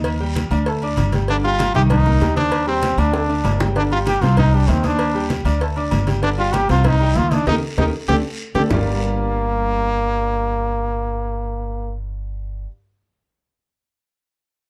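Salsa in G minor at a driving, danceable 194 BPM, where a woody, growly pizzicato upright bass sits up front beside a polished grand piano comping through Ebmaj7, Dsus4 and G5 changes. A brilliant, punchy trombone solo with vibrato enters at 1.3 s and carries the melody. Congas, tight high-tuned bongos with cowbell, and ringing agogo bells and timbales drive from the background alongside a raspy guiro, with drum fills and a band accent before the percussion drops out at 8.8 s. The dark production has moderate studio reverb, and the bass and piano play on under the trombone until it ends at 11.9 s, the bass stopping at 12.6 s and the piano carrying on until the cut at 12.7 s.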